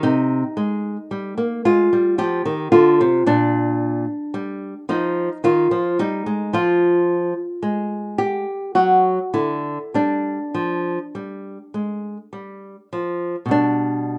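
A lone nylon-string guitar carries this short classical piece, a baroque-style dance in 3/4 that moves at a slow 49-56 BPM with a free, rubato feel. The instrument sounds woody and dark, with the dulled ring of old strings, and its fingerpicked tone sits small and up front in the mix. The mood is introspective and flowing, with the harmony passing from Cm through Bb and Eb to Fmadd9, then D/F# at 8.8 s and G5 before settling on G/B at 13.5 s. A moderate studio reverb adds a modest sense of space, while the rough home-demo mix keeps the top end soft and rounded. The recording is an excerpt taken from a longer work, and the guitar plays alone from the start until it stops at 14.2 s.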